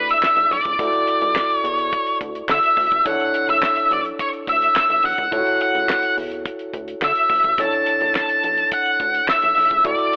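An octave-fuzz lead guitar carries the melody up front from the first second, dark and picked, over a barky, gritty electric piano pushed through a combo amp and a rubbery, hollow square-wave bass with a resonant filter pluck. This feel-good, danceable slice of early-eighties boogie funk moves at 106 BPM in a straight 4/4, with a damped 70s kit (a fat snare, tight kick, hi-hat and handclaps) entering at 0.1 seconds as the harmony alternates between Bm11 and Dmaj9. The mix has a telephone-like tone and a touch of light studio reverb.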